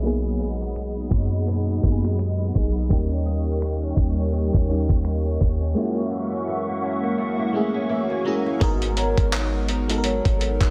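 This sensual, longing contemporary R&B excerpt opens in G# minor at 84 BPM in 4/4 with a swung sixteenth-note feel, as most of the band starts together under a filter sweep that runs through the first section. Up front, a gritty, tape-toned sampler-style drum kit of thumpy kick, hi-hat, finger snaps and handclaps, with soft clipping on the snare, sits beside a deep, boomy 808-style bass. A lush, dreamy FM electric piano with a soft pad layer, treated with chorus and phaser, carries the accompaniment over G#m7, D#7 and F#7. Beneath it, a fingerpicked flamenco guitar plays delayed arpeggios with audible finger squeak, while a hollow, flute-like pad holds warbling sustained chords until 8.6 seconds. A delicate, bell-like celesta drifts in the background from 3.3 seconds, the electric piano adds a fill from 7.5 seconds, and the harmony returns to G#m7 as a new section begins. The dense, heavily limited mix has light reverb and a digital ambience.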